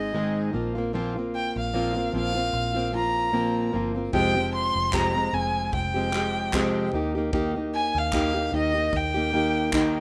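A dark, woody violin sings the melody up front with vibrato and plate reverb in this heartfelt, carefree acoustic pop excerpt at 75 BPM with a light sixteenth-note swing. A full-bodied jumbo steel-string acoustic guitar, fingerpicked with fresh strings and also up front in plate reverb, provides the accompaniment over a round, foam-muted vintage electric bass, and at 4.1 s an airy, polished country drum kit of handclaps and punchy kick joins them. The chords move from Ab through Bbsus2 and Fmadd9 to Eb, all in a rough home-demo mix with moderate studio reverb.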